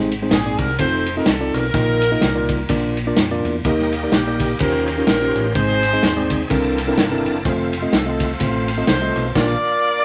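A tight, up-front horn section carries the melody with a pop-style vibrato in this soulful, hopeful uptempo gospel excerpt at 126 BPM in Eb major, swinging gently in 4/4 over a mellow, clean tine electric piano, a round, dark fingered electric bass and a punchy acoustic drum kit with dark cymbals. At 3.6 seconds a bright, shouting tonewheel organ joins with sustained chords, its light overdrive, key click, chorus vibrato and slow rotary speaker adding fullness, while a moderate studio reverb gives the band a natural room. The chords move from Ab through F7 and Eb13 to C13 and F, and the whole band lands a shared accent on Bb at 9.4 seconds.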